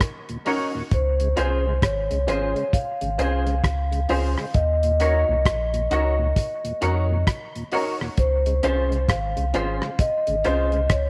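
A cloth-damped drum kit opens this laid-back, sunny roots reggae excerpt at 66 BPM in Db major, its thuddy kick, hi-hat and rim click sitting dry and up front with a rolled-off top, soon joined by a fat, lightly overdriven tonewheel organ in the background with chorus vibrato, key click and a slow rotary speaker. A clean, twangy electric guitar with ensemble chorus and dub echo and a dark, boxy grand piano playing short stabs enter at 0.5 seconds. At 0.9 seconds a round sine sub bass arrives deep and up front beneath a soft-mallet vibraphone melody that rings metallic through dub echo, all over a swung 16th-note feel moving between Ebm7 and Dbmaj7 in a small, lightly reverberant room.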